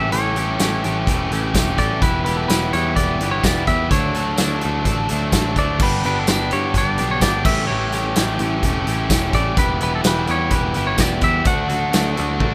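A clean, twangy electric guitar melody opens this cool, bittersweet indie rock fragment over a bright, compressed overdriven guitar riff up front, a dark, biting overdriven guitar riff with lush chorus in the background and a growly, foam-muted picked bass, joined at 0.1 seconds by a big, natural rock drum kit with punchy kick, medium-tuned snare, bright cymbals, tambourine and toms, all captured in a dry, rough home demo mix.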